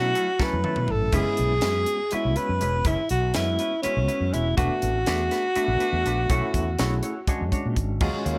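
A breathy, whispered tenor saxophone with slapback echo leads from the start of this funky, slick electric jazz fusion excerpt in 7/8 at 244 BPM in F# minor, over a gritty, barky overdriven tine electric piano with fast tremolo, clean semi-hollow guitar stabs through lush chorus, and a growly, punchy fretless bass, while a crisp fusion drum kit with a high-tuned snare and dark cymbals enters at 0.2 seconds and plays a fill from 0.4 to 1.1 seconds, in light reverb, as B9sus4, F#9sus4, E9sus4 and a return to B9sus4 give way to a closing A#7alt.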